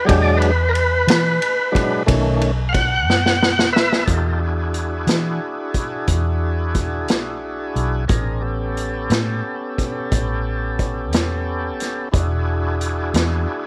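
A light studio reverb colors this excerpt from a longer piece, with the organ and drum kit both up front. It's a gritty, laid-back slow blues in 12/8 at 60 BPM with a straight feel, sitting in E mixolydian and tuned to A4 = 444 Hz. An overdriven tonewheel organ, thick and full with audible key click and vibrato through a slow rotary speaker, holds sustained chords and takes a solo turn from 0.0 s to about 4.1 s. Underneath, a vintage muted fingered electric bass gives a dark, round, amped low end, while a vintage acoustic drum kit plays hi-hat, ride cymbal, snare and a punchy kick in a roomy, distant studio space with a rolled-off top. A drum fill arrives at 3.1 s, leading into the next section at 4.1 s. The harmony moves through E9, B9 and A9 chords before settling back on E9.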